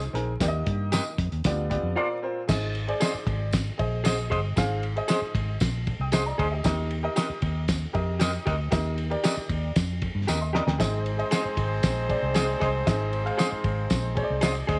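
Vinyl crackle and a small, lightly reverberant room frame this short cut from an uptempo 1960s-style soul tune, moving at 116 BPM in a straight, danceable 4/4. A cloth-damped drum kit sits up front with a thuddy, muffled, gritty character, a fat snare, a tight kick and dark cymbals, while a round, foam-muted fingered electric bass punches along beside it. A bright, woody upright piano, worn and slightly detuned, carries the accompaniment and closes the passage with a fill, and a jingly tambourine rides lightly underneath. Electric guitar stabs through a small old amp come in at 0.9 seconds, compressed and slightly broken-up. After a drum fill, a mellow horn section enters at 10.8 seconds with a soft attack, light vibrato and octave doubling, adding a jazz-style second line as the harmony returns to Ab.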